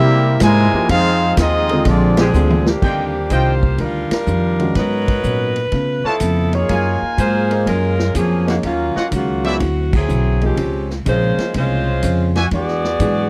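Big-band swing at 124 BPM with a joyful, swinging feel, this dry, close-sounding excerpt opens with a clear trumpet section carrying the melody over a nasal, straight-muted trombone second line and bright sustained trombone chords, all of which stop at 2.3 seconds. A drum fill on a big-room kit with dark cymbals and a punchy kick then leads into the main passage, where a tight saxophone section with light vibrato takes the melody from 2.2 seconds and the trumpets return with present stabs. Underneath, a woody pizzicato upright bass sits up front, while a dark, clean hollow-body electric guitar and an intimate baby grand piano, its action noise audible, comp in the background through rich extended chords from C7b13 to E9.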